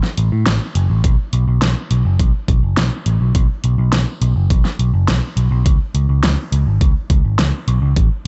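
A picked electric bass sits up front in this short synthwave excerpt, its amped tone moving between F#1 and A2 from 0.2 seconds onward. The mood is nocturnal and nostalgic, set at a steady 104 BPM in a straight 4/4, with the tuning pitched slightly low at A4 = 438 Hz. A pop drum kit opens the clip at 0.0 seconds with a fat snare and warm hi-hats, layered and overdriven, sitting further back in the balance. An electronic kick drum joins at 1.0 seconds, knocking, overdriven and placed up front alongside the bass. Both drum parts carry the sound of being re-recorded in a small room, while the mix overall stays dry and dark, its top end rolled off above 8 kHz.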